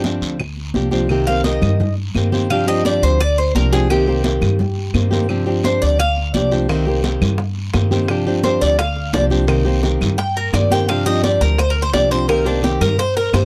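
Cuban son in the guajira style at a brisk 172 BPM in C minor, this nostalgic, danceable excerpt from a longer piece rocks between G7sus4 and Cm7 in a dry, close 1970s-style studio sound. Up front, a bright, boxy fingerpicked flamenco guitar with audible finger squeak carries the accompaniment while a dark, thumpy gut-string upright bass plays pizzicato beneath, and the double-strung, metallic Cuban tres enters at 1.3 s with picked arpeggios that take the solo. A raspy, saturated guiro rides along as ringing high-tuned congas and woody claves sit in the background, joined at 6.7 s by tight, hard-hit bongos.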